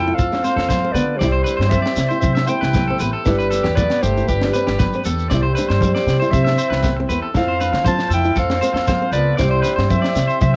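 A homespun cassette recording with a moderate room reverb carries this sunny, warm slice of highlife guitar band music, cut from a longer piece and moving at 118 BPM in a straight 4/4 in C major. A clear, punchy clarinet takes the jazz-style melody with light vibrato, while a breathy, whispered tenor saxophone plays an intimate second line beneath it, both sitting in plate reverb. A bright, twangy electric guitar at the edge of break-up picks arpeggios through tape echo, and a fingerpicked flamenco guitar sits in the background, entering at 0.1 seconds, as a buzzy vintage combo organ holds very quiet sustained chords. The woody, thumpy upright bass anchors the harmony from F to C, G and back, while a tight funk drum kit with a high-tuned snare, damped congas struck with hard hands, and a grainy shekere all come in at 0.2 seconds.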